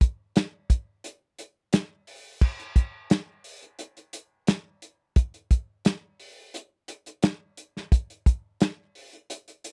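Swaggering and gritty, this short blues fragment in straight 4/4 rests entirely on a soul drum kit heard from 0.0 to 9.7 seconds. The acoustic kit sits up front and dry, with a pumping room character and a rolled-off top that keeps the sound dark and rounded. A tight kick and a medium-tuned snare carry the groove, while the hi-hat and crash cymbal sound dark and shadowy. The performance moves into a new section at 2.4 seconds and holds that stride to the end. With little reverb around it, the kit feels close and intimate, like a drummer working just beyond arm's reach.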